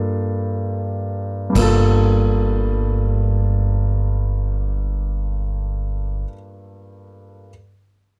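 A woody, thumpy upright bass, plucked on steel strings and placed up front, sounds a low G from 1.5 s, while a warm grand piano opens on a Gm9 chord in G minor and plays throughout this brief cut from a longer melancholic, intimate jazz ballad in free time. A vintage brush kit adds a single moment at 1.6 s: dark cymbals with a crash and a punchy kick, heard in a small, pumping room. The dry, dark production keeps the close, intimate mood.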